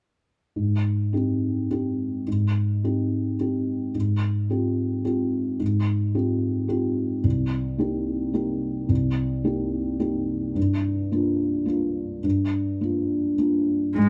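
Fragile and longing, this neoclassical fragment in 3/4 drifts at 108 BPM with a rubato feel. A felt-muted upright piano sits close and intimate, its mellow, boxy tone thick with felt and its action noise clearly audible as it moves through Abmaj7, Fmadd9/Ab, Cm7 and Gm7. At 14.0 seconds a single con sordino cello enters up front on one bowed Ab3, veiled and soft in attack with light vibrato, all wrapped in light reverb and a dark, warm production.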